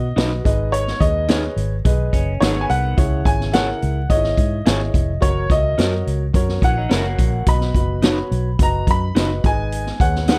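A brilliant, worn grand piano carries the melody over a woody, boxy upright piano and a round, foam-muted electric bass from the start of this joyful, danceable stretch of uptempo 1960s-style soul at 107 BPM, with a punchy, up-front big-band drum kit and slightly broken-up guitar stabs joining at 0.2 s, a twangy, lo-fi guitar riff surfacing briefly at 2.1 s and 6.6 s, and the G#m, C#m, F# and B chords sitting in a dark, lightly reverberant production.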